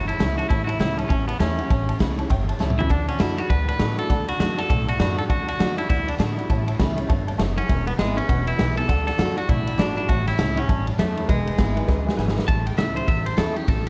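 An upbeat, rowdy rockabilly excerpt in A major swings at 200 BPM, opening with a twangy, compressed electric guitar carrying the melody through tape echo. Beneath it, a dreadnought steel-string acoustic guitar is picked in the background with audible finger squeak, while a woody, thumpy upright bass on gut strings is plucked pizzicato. From 0.1 s, a raw garage drum kit sits up front, with a punchy kick, a medium-tuned snare, ride cymbal and toms in a bright stone room, its top end rolled off for a dark, smooth edge. A detuned, jangly honky-tonk upright piano with short sustain adds vintage colour in a high register until 12.4 s. The harmony cycles through A, D and E, and a couple of drum fills push the band along before a clean electric guitar solo takes over at 12.5 s. Everything rests in a light studio reverb.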